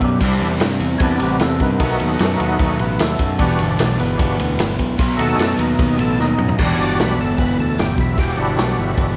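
A gritty, thick overdriven tonewheel organ with percussive third-harmonic attack and chorus vibrato takes the solo throughout this smoky, brooding blues rock and southern rock excerpt in E minor at 151 BPM, over a crunchy double-tracked picked guitar riff up front, a growling bright overdriven fingered bass, and a punchy, natural vintage drum kit with a rolled-off top that plays a fill at 6.2 seconds, all moving through Cmaj7, B7 and Em7 in a small, echoing room.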